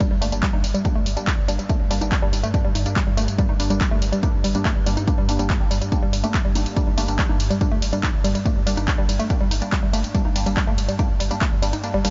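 A barely audible electronic impact opens this relentless, hypnotic slice of driving peak-time techno, cut from a longer piece. It arrives with a heavy, layered kick, re-recorded in a large room, and a dry, punchy analog drum machine supplying handclaps, hi-hat, ride cymbal and tambourine, all at 142 BPM in a straight 4/4. Over this beat, a woody, wave-folded pluck with a noise layer plays a riff in G minor, treated with chorus, overdrive and tape echo, while a muted, detuned dub chord stab fires short filtered hits through phaser and tape echo. A thick, saturated sub bass holds G1 in the background from 0.1 seconds, and a very quiet, moody ambient pad drones on G2 from 0.8 seconds, with a slow attack, a moving notch and a long release. The bass, the pluck, the stab and the drum machine's percussion, hats and cymbals pump with the sidechain, and a light digital reverb gives the mix a rolled-off top, with the kick stopping at 11.5 seconds.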